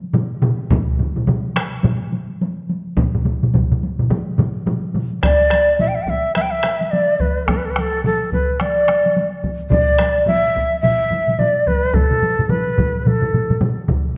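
Swung sixteenths in 4/4 drive this ceremonial, powerful taiko excerpt from a longer piece: a solo taiko struck with hard sticks opens at 0.0 s with a compressed, saturated punch, joined almost at once by several ensemble drums, some heavy-sticked in a small room, one close and dry, and another hard-hit and gritty from 0.7 s. At 5.2 s a breathy bamboo shakuhachi steps up front with the melody, its tongued chiff, vibrato and rolled-off highs giving a warm, expressive edge against the drums. A wet recital-hall reverb lends the whole ensemble a resonant sense of space.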